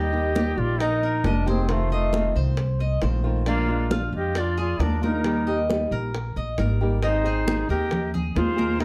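A relaxed, warm Cuban son and guajira groove in a straight 4/4 at 135 BPM, in Eb major, with a woody pizzicato upright bass up front, congas entering at 0.1 seconds in the background with hard hands and bongos joining at 0.4 seconds with a tight, high-tuned sound. A duduk carries the melody with vibrato and scooped, folk-style notes, while a bright, airy silver concert flute adds a crisp second line. A fingerpicked nylon-string guitar with audible finger squeak and a metallic, double-strung Cuban tres playing arpeggios fill out the harmony, moving from Eb through F7 and Bb7 back to Eb before settling on Abadd9 at 7.0 seconds, all in a dark production with light reverb, cut from a longer piece.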